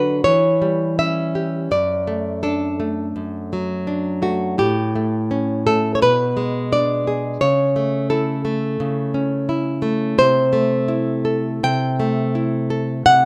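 A full-bodied, up-front nylon-string guitar rings in a moderate recital hall reverb across this 13.3-second passage cut from a longer romantic piece for solo classical guitar. Fingerpicked at around 85 BPM in 4/4 with uneven, rubato phrasing, it spans F#2 to G5 and moves through chords such as C#dim/E, D/F#, A and Am7/C. The mood is warm and sunny.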